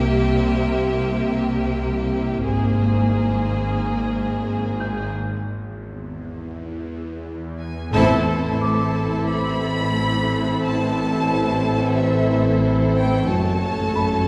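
Heard from further back in a reverberant scoring stage, this ominous, eerie suspense cue, cut from a longer piece, unfolds at 89 BPM in 4/4 with a straight feel. Bowed string sections with vibrato play throughout. A clear, focused violin section carries the melody, a second, smooth violin section plays an inner line, and a lush, close viola section supplies accompaniment. A background cello section and the double basses share the bass. Underneath sits a tense, detuned sawtooth drone with a noise layer, slow attack and phaser, while a mellow, boxy grand piano with long sustain adds high texture. The harmony passes through C7 and Abadd9 before a break at 5.2 seconds, then settles into A minor with a band accent at 7.9 seconds. There a dark, tight French horn section enters with sustained chords and soft-mallet timpani sound briefly, barely audible, before the harmony turns to F#m near the close.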